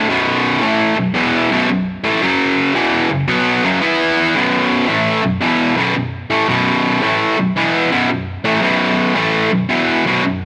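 Swaggering and gritty, this rock excerpt struts at 112 BPM in 4/4 with a swung eighth-note feel. A lone overdriven electric guitar carries the whole recording from 0.0 to 10.4 seconds, its bright, picked tone double-tracked and placed up front, ranging from B1 to E4. The part moves through power chords on B, F#, and E before landing back on B at 4.3 seconds, where the opening section repeats. A moderate echo chamber reverb with a 2.1-second decay gives the sound a roomy tail. Tuned slightly below standard pitch, the guitar has a raw edge as this fragment of a longer piece cuts off.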